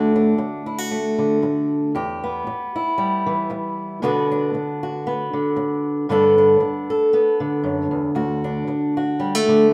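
A fingerpicked steel-string acoustic guitar plays alone and up front through this peaceful, nostalgic folk passage cut from a longer piece, its gently swung, concert-toned picking moving through D, Em, Bm and Gadd9 before settling back on D at 8.2 seconds, bathed in a wet, large-studio reverb.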